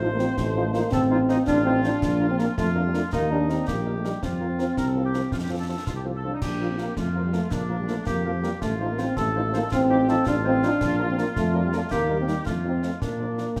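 A military-style march for wind band in 6/8, this short passage cut from a longer piece moves at 109 BPM in Bb major with a proud, rousing character. A very quiet cornet carries the melody with light vibrato in a classical style, while a tight woodwind section and a solo euphonium add second lines, the euphonium smooth on top. An up-front, punchy tuba anchors the bass, and a distant French horn section sits in the background with roomy accompaniment. Concert snare drum, concert bass drum and clash cymbals keep the march going from 0.2 seconds, the cymbals dark and the kit heard in a small room. The harmony circles through F7/A, Bb, Eb and Fsus4 before closing on Bb at 13.0 seconds, the whole mellow band wrapped in a wet large-studio reverb.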